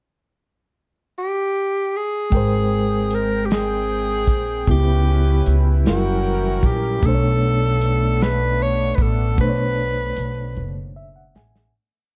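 Slow six-eight R&B at 51 BPM with a sultry, late-night mood: a breathy tenor saxophone opens the pickup at 1.2 seconds with a free, jazz-style solo melody full of vibrato and scooped notes, sitting up front with plate reverb. At 2.3 seconds the rest of the band joins: a reedy electric piano with fast tremolo plays held, spread chords with grace notes, a smooth, detuned sawtooth pad with chorus sustains chords beneath, a woody, thumpy pizzicato upright bass plays a sliding line, and a small-room soul drum kit with a tight kick and rolled-off top keeps the slow beat. Rich chords such as G#maj9 and F#7b9 colour the dark production, and drum and electric piano fills close the piece from 10.6 seconds as it fades out.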